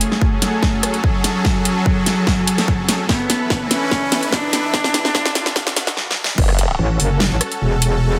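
A dark, woody solo cello carries the melody with vibrato and a dub echo over a lush, detuned supersaw pad that pumps against the beat. Beneath them, a punchy electronic kick, a huge snare and metallic hats drive this menacing half-time dubstep build-up, with drum fills, a filter sweep and a very quiet riser. At 6.4 seconds the drop hits on a formant-sweep wobble bass, which gives way at 6.8 seconds to an aggressive, saturated metallic wobble bass with chorus and overdrive, up front in the mix as the excerpt cuts off.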